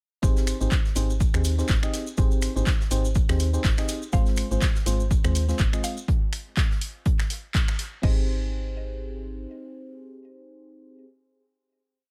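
An up-front, punchy electronic kick drives this relaxed deep house piece with a four-on-the-floor pulse, joined by a tape-warm analog drum machine's claps, snaps, hats and crash, a very quiet brushed jazz kit on hi-hat and snare, and grainy, hand-played maracas in sixteenths, in a small room ambience. Underneath, a woody, round FM bass with sidechain pumping plays a dotted rhythm alongside a mellow FM electric piano, whose dark, close-voiced stabs carry chorus, sidechain pumping and dub echo. A percussive, mallet-like synth pluck with chorus and digital delay enters in the background at 4.1 seconds with a repeating riff, and after the kick and drum machine stop at 8.1 seconds the piece ends on a final chord.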